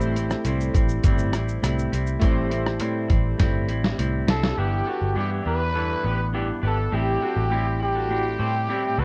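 Worn cassette-tape warble and light reverb wrap this hazy, lonely bedroom-pop fragment in A minor at 102 BPM, which moves from Am7 to G6 and back. A muffled, pitched-down sampler drum kit with a thumpy kick sits up front beside a dark, foam-muted picked bass, while a twangy clean electric guitar and glossy, detuned pulse-wave synth keys in plate reverb fill out the opening; the drums and synth stop at 4.6 seconds after a fill that begins at 3.4 seconds. From 4.3 seconds a raspy, growling trumpet carries the melody with vibrato, chorus and delay, joined by a slightly broken-up, lo-fi second guitar line through a small old amp.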